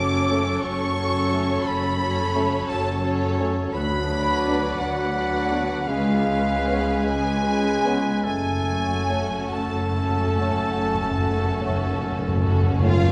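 A slow, melancholic and elegiac orchestral passage in F# minor opens with a distant, lush violin section carrying the melody in a rubato 12/8 at 46-59 BPM, over a soft round timpani stroke, while a clear oboe, a hollow silver flute, clarinet and a second violin section with expressive portamento play supporting lines. Bassoon and violas fill the middle, cellos and double basses hold the bass, and a mellow, roomy French horn section sustains chords from 0.3 s as the harmony moves from F# minor through Bm/D and C#7 and back. The timpani returns with a fill at 8.3 s, and the orchestra sits in a reverberant concert hall.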